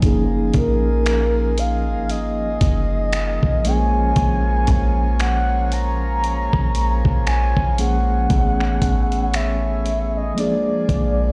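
Heard through a big sound system in a bare stone room, this moody, longing contemporary R&B piece at 58 BPM in a swung 4/4 puts a gritty, compressed sampler-style kit of finger snaps, hi-hat and thumpy kick and a deep, boomy 808-style bass up front, beneath a clean, mellow tine electric piano and a reedy, breathing pedal harmonium moving from F#maj13 through A#m7 and Amaj7 to A#7, while a round, horn-like synth lead with chorus, delay and vibrato enters at 0.6 s.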